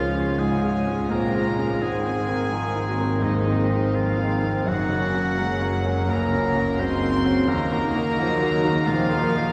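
Played rubato in 4/4 at around 85 BPM, this 9.5-second fragment of a cinematic, emotional orchestral score feels sorrowful and longing, tuned a touch low to A4 = 439 Hz. A violin section carries the melody high up, pure and floating with a soft attack and sul tasto bowing. A clear, present solo oboe and a second, intimate violin section trace supporting lines beneath it. In the background, a bright, brilliant grand piano with long sustain and audible action noise accompanies alongside a viola section, while a very quiet, thumb-plucked harp rings out arpeggios and a distant, dark French horn section holds sustained chords. Warm cellos and a woody, lush double bass section anchor the bass as the harmony moves from Db through Abadd9 and Gb to Ebm, and a wet concert-hall reverb sets the orchestra further back in the room.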